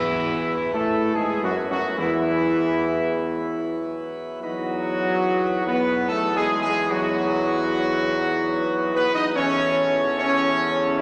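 Bathed in a long, wet cathedral reverb, this solemn and majestic classical passage in triple time is cut from a longer piece. A dark, distant trumpet section carries the melody up front, while a chamber organ principal chorus with its chiff, a background French horn section with light vibrato and a very quiet, mellow trombone section hold sustained chords. A clear, vintage-toned tuba anchors the bass as the harmony moves from Esus2 to B/E at 4.4 seconds and A/E at 9.4 seconds.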